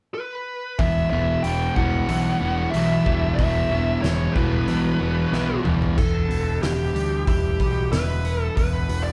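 The double-tracked fuzz guitar stands out most, pushed up front with a warm, compressed riff in the low register that drives the opening stretch before dropping away at 6.0 seconds. This short cut of dark, angsty quiet-loud alternative rock moves at 93 BPM in a straight 4/4, sitting in E minor as the band settles onto an Em chord after a brief unaccompanied moment. A bluesy, distorted lead guitar carries the melody with a shadowy tone, starting almost at once at 0.1 seconds. Behind it, a clean twelve-string electric guitar sits softly in the background with picked arpeggios, while a bright, punchy bass with overdriven fuzz grounds the low end. The loose indie drum kit brings a fat snare, punchy kick and dark cymbals in a pumping room sound, and a drum fill between 5.3 and 6.0 seconds leads into the next section. Light reverb gives the feel of a band playing live together in one room.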